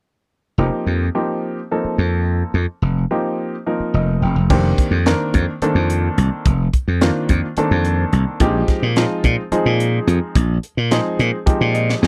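A clear, worn concert grand piano and a growly, punchy slap bass open this slick, funky electric jazz fusion excerpt at 215 BPM in a straight 7/8 over F9sus4 harmony, the piano adding short fills, before a tight funk drum kit with bright cymbals and a high-tuned snare joins at 4.5 s as the chords move through F7sus4 to Bb13sus4, ending on a drum fill at 11.9 s in a dry, close 1970s-style studio sound.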